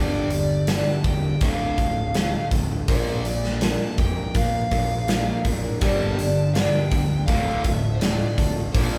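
A straight 4/4 pulse at 82 BPM drives this brooding, angsty slice of quiet-loud alternative rock in D minor, moving through Gm, Dm and Bb, with a big acoustic rock kit up front from 0.3 s: punchy kick, medium-tuned snare and hi-hat. A compressed fuzz guitar riff and a fuzzy, overdriven picked bass in the background hold down the low end, while an old ladder-braced acoustic guitar picks warm arpeggios with audible finger squeak and a smooth, bright overdriven lead guitar carries the melody. At 5.8 s a distorted electric guitar adds another riff in the background, the band playing live in one room with moderate large studio reverb.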